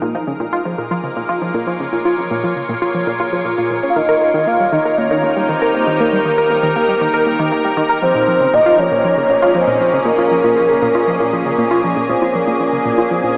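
Drenched in a huge, wet ambient reverb yet heard through a small-speaker sound, this cosmic, expansive piece of sequencer-driven space music opens with an evolving wavetable pad fading in on bright, morphing sustained chords over a tight, driving sequenced synth riff coloured by chorus, cassette tape and tape echo. At 3.9 seconds a soft octave-layered lead enters with a dark, round melody carrying chorus, tremolo, vibrato and tape echo, as the harmony moves from Bbm7 to Eb and back. A deep sine sub bass slips in very quietly underneath at 12.1 seconds.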